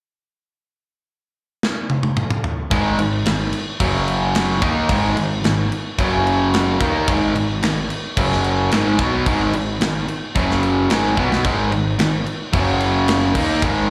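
A straight, driving 4/4 hard rock groove opens with a tight metal drum kit fill of crash, kick, snare and toms at 1.6 seconds. At 2.7 seconds, an up-front crunchy guitar with spring reverb and a very quiet distorted electric guitar play a menacing riff moving between G#5 and F#5 power chords and G#m, while a fuzzy, overdriven picked bass plays beneath, all heard through a club PA with light reverb in this cut from a longer live piece.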